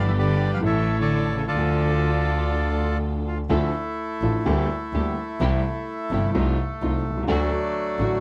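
A reedy bandoneon carries the melody up front, its tone set in a boxy small room, over this tense, sultry fragment of a tango in D minor. The pulse sits at 127 BPM in 4/4 but is played with a rubato feel, and the harmony moves from G through A to Dm before turning to Gm/D, C, F7/C and finally D in the second half. A clear, woody upright piano supplies the accompaniment with audible action noise, while a focused, bowed double bass with vibrato sits up front beneath it. A warm, expressive cello adds a second line with soft attacks and portamento, playing only from 0.1 to 3.0 seconds. In the background, a dark, lush studio string section places bowed stabs with a smooth top. Close, detailed microphones capture the ensemble in light reverb.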